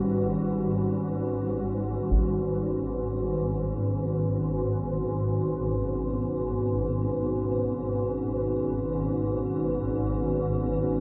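A cavernous cathedral reverb with a five-second tail surrounds this unsettling dark ambient drone, cut from a longer piece and floating in free time in G# minor. Up front, a swarming drone of detuned, granular tones holds the low register from G#1 to G#2, tense and evolving, while a deep, moody pad built from sawtooth and sine layers with a sub octave sustains a G# minor chord through chorus and its own reverb. Very quiet gamelan-type bossed gongs ring dry and close from the start, their metallic bronze tone round and beating as they arpeggiate on G3 until 7.1 seconds. At 2.1 seconds a taiko ensemble strikes a brief, heavy-stick accent, close and dry under a low-pass filter, stopping by 2.4 seconds. From there the drone and the dark pad, joined by the gongs until 7.1 seconds, carry the shadowy atmosphere on to 11.0 seconds.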